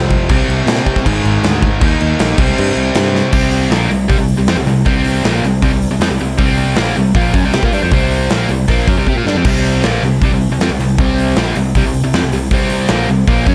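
Heavy and menacing, this hard rock excerpt drives at 157 BPM in C minor, with a double-tracked, overdriven electric guitar riff up front over a growly, punchy picked electric bass. A big acoustic rock drum kit with a punchy kick, medium-tuned snare, hi-hat and bright crash cymbals enters at 0.1 seconds, marking the change of section with fills at 3.1 seconds and again at 9.1 seconds. Light reverb and a small room ambience frame the sound, and the harmony moves through C5, Ab5 and Eb5 power chords before returning to C5.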